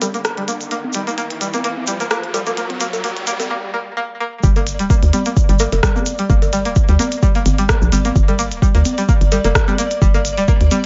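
This cool, hypnotic minimal techno excerpt at 129 BPM in G minor opens with a twangy, nasal resonator pluck riff under a filter sweep, carrying chorus, delay and sidechain pumping, over clicky hats and rim clicks, layered electronic cowbell and congas with delay, a grainy, close egg shaker and an electronic riser that stops at 3.5 seconds for a brief break. At 4.4 seconds the drop lands with a deep, up-front kick and a hollow, bouncy FM bass that pumps with the sidechain, while a detuned, pulsing gated texture sits in the background with chorus and reverb. The whole mix carries a light reverb and a gentle swing on the 16ths.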